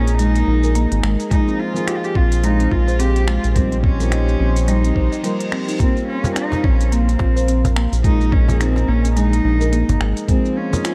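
Organic downtempo in Bb dorian at 107 BPM with a lightly swung 16th feel, meditative and dark, cut from a longer piece. An intimate cello played sul tasto with light vibrato carries the melody over a mellow, felt-muted upright piano with audible action noise, a detuned, chorused analog pad and buzzing, woody marimba arpeggios. Digital delay colours the cello, piano and marimba, sidechain pumping moves the piano and pad, and a deep, round analog bass sits up front. Crisp hi-hat, finger snaps and shaker from an electronic kit run from the start, a gritty, thumpy kick joins at 1.3 s, an electronic reverse cymbal leads into a short break at 5.2 s, and a close, dry cajon enters at 6.2 s.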